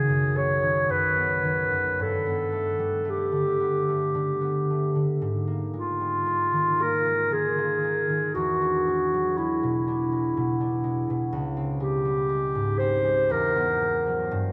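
Loosely pulsing in 3/4 at a rubato 54 to 63 BPM, this short impressionist classical passage for clarinet and harp is cut from a longer piece and carries a pastoral, luminous mood. The clarinet carries the melody from the start to 14.3 seconds, singing in a warm, distant, roomy classical voice that still sits up front as a solo line between E4 and C#5. Beneath it, the concert harp supplies fingerpicked accompaniment, its ringing acoustic tone ranging from B1 to D4 and lasting until 14.5 seconds. The harmony drifts through colored chords, opening on Badd9 and moving through Gadd9, G#sus2 and E9 before touching Db5 and settling on E. A wet cathedral reverb with a 6.1-second decay places the duo in a vast, echoing space, lending the whole a hazy, suspended glow.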